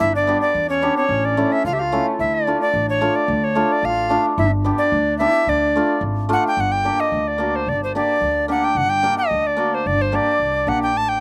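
A bright tenor recorder with airy vibrato and a crisp, chiffy attack leads up front in this bittersweet yet festive klezmer fragment in 2/4, over a mellow, distant clarinet second line that drops out at 6.0 s and a dark, thumpy pizzicato upright bass, while a shimmering, ringing hammered dulcimer joins at 0.3 s, all captured outdoors with a dry sound.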